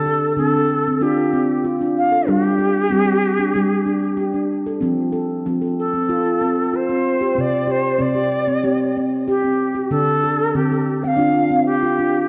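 World meditative tuned-percussion music at 94 BPM, gentle and calm, in which a ringing nitrided-steel handpan plays fingertip arpeggios with a boxy small-room closeness while a pure, woody cedar flute carries an expressive, tongued melody with audible chiff, vibrato and delay, both sounding throughout over Dm, G5, F and C5 chords, all wrapped in a wet echo-chamber reverb and the worn, warbly pitch drift of old cassette tape.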